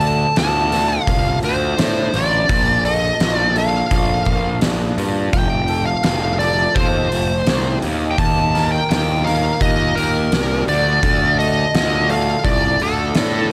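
This bittersweet, cathartic quiet-loud alternative rock excerpt opens at 84 BPM in a straight 4/4 with the full band at once: a smooth, overdriven lead guitar carries the melody up front while a slightly broken-up electric guitar picks compressed arpeggios in the background through analog chorus and delay. Beneath them, a growly, up-front fuzz bass and an oversized low-tuned kit with a fat snare, punchy kick, hi-hat and a dark, saturated, rolled-off top drive the passage in a bright stone room under light reverb. The chords move from Dm through Bbmaj7, F and Ebadd9 back to Dm, and the drums drop out at 13.3 seconds just before the other parts end at 13.5.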